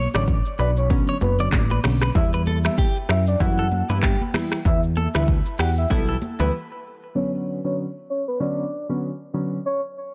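A clean, picked electric guitar riff with spring reverb and delay opens this hypnotic, mellow afrobeats excerpt in B minor at 96 BPM, alongside a punchy, funky analog bass pluck and a round, chorused keys part moving between Bmadd9 and Em. An electronic afro-pop kit with a deep kick, metallic hats, finger snaps, handclaps, rim clicks and shaker swings its 16ths, ringing high-tuned congas sit in the background, and a soft, dark, octave-layered synth lead carries the melody with vibrato, chorus and delay. After a break at 6.5 seconds, the keys and lead carry on alone through a filter sweep over a dense, heavily limited modern master.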